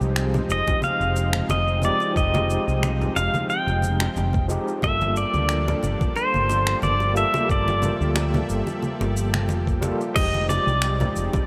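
Relaxed and warm, this sunset chillout excerpt drifts over a gently swung groove as chords move from Fm9 to Gm9 and back. A barky, overdriven tine electric piano with medium tremolo and tape echo sits alongside a thick, detuned sawtooth unison pad with chorus, while a dark, round fretless bass sits up front. A produced smooth R&B kit of congas, crash, finger snaps and shaker is joined by very quiet ringing bongos and congas and, from 0.7 s, a thumpy, gritty sampled kick, as a clean, fingerpicked pedal steel guitar carries the slide melody with volume swells and tape echo from 0.5 s, all set in a lush hall reverb.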